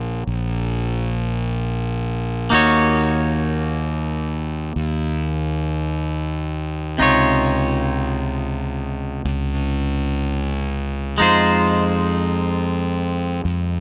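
Smooth and warm, this sunset chillout piece drifts in free time in Eb dorian, tuned slightly low at A4 = 438 Hz, and is cut from a longer piece. A clean, picked electric guitar carries the accompaniment up front, its bright, twangy tone softened by a low-pass filter and trailed by tape echo as it moves between C3 and Db5. Beneath it, a fingered electric bass sits just as close, dark and round with an overdriven fuzz, holding the low end from Bb1 to F2. Both parts play throughout the 13.8 seconds, moving through Bbm9, Ebm7, Dbmaj9 at 7.0 seconds and Fm7 at 11.2 seconds. A light reverb surrounds an otherwise dry, gritty hardware recording captured on cassette tape.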